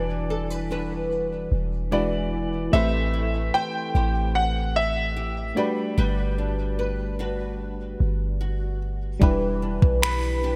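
This moody, late-night contemporary R&B excerpt, cut from a longer piece, has a bright 1980s-style digital sheen and a light, small-room ambience. A natural-sounding concert grand piano sits up front carrying the melody high in its register, its short-sustained notes trailed by digital delay. Beneath it, a mellow FM electric piano supplies the accompaniment with fast-attack, decaying tones, while an acoustic flamenco guitar plays fingerpicked arpeggios, audible finger squeaks and all, colored by ensemble chorus and delay. A deep, boomy, sine-like 808-style bass anchors the low end up front as the harmony moves from Em9 through E7, Am7 and Gmaj7. The electronic drum kit arrives only at 9.2 s, adding finger snaps and a soft kick treated with gated reverb just as the harmony settles on Em7.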